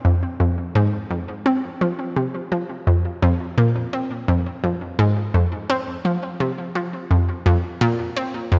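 Expansive and cosmic, this ambient fragment, cut from a longer piece, moves at 85 BPM in 4/4 with a straight feel in F minor. A lone analog pluck carries it from start to finish across its 8.6 seconds, ranging from F2 to C4. Its tone is round and bright, built from detuned sawtooth and square waves with a layer of noise, and a filter pluck gives each note a fast attack and short decay. Chorus and tape echo thicken the synth, which sits up front in the mix. A lush hall reverb with a 3.0-second tail surrounds it, lending the whole passage a spacious quality.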